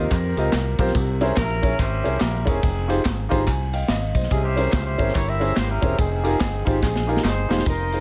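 A dark, vintage horn section with light vibrato and analog delay carries the melody over a clear, intimate grand piano and a round, punchy fingered electric bass, as a polished drum kit with bright cymbals and saturated handclaps and tambourine drive this solemn yet fervent uptempo gospel cut at 143 BPM in F minor with a swung feel, the piano taking a fill at 3.0 seconds, the drums another at 6.8 seconds, and a lush, distant string section slipping in at 7.7 seconds, all in an echo-heavy mix with small-room ambience.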